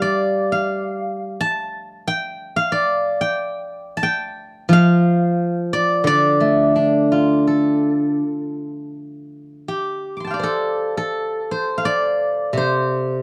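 A steel-string zither, played with fingerpicks, carries this short solo from start to finish, its ringing, silvery tone sitting up front in the mix. The piece is Chinese traditional music for solo plucked strings, elegant and full of longing, moving in a rubato 4/4 around 78-94 BPM in the D yu mode, tuned slightly low to A4 = 438 Hz. The zither ranges from C3 up to D6, its mellow acoustic voice spanning low and high registers. The opening passage gives way to a new section at 9.0 seconds, which carries on until the cut at 13.2 seconds, since this is taken from a longer piece. A light reverb and a dark, warm production surround the instrument.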